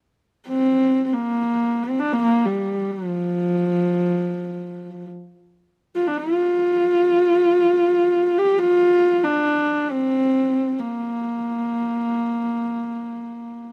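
A lone horsehead fiddle enters at 0.5 s, bowed on horsehair strings by a single player and sitting up front and close in the sound. This short passage of Mongolian traditional music, cut from a longer piece, moves at a slow 68 BPM in a straight 4/4 and rests in a Bb gong mode, with tuning set to A4 = 444 Hz. The fiddle's tone is husky yet smooth at the top, with an airy bow, soft attacks, light vibrato and gliding portamento as it ranges from F3 to G4. Recorded outdoors with little reverb and an absence of room sound, the solo feels intimate even as the mood is vast and proud. The fiddle plays through to the end at 13.7 s.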